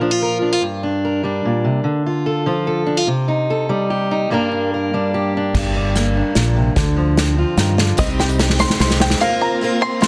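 A fingerpicked parlour acoustic guitar with fresh strings and audible finger squeak opens this stirring, yearning indie folk excerpt in G minor at 146 BPM in 3/4, moving through Gm, Dm and Cm before a round, punchy fingered electric bass and an airy, up-front unplugged drum kit played with bundle sticks enter at 5.5 seconds to start a build-up with a drum fill, and at 8.0 seconds a bright picked concert guitar, a twangy banjo plucking high arpeggios with fingerpicks, a lush bowed string section sustaining dark chords in the background and a very quiet jingly tambourine fill out the dense, lightly reverberant mix as the harmony settles on Bbsus2.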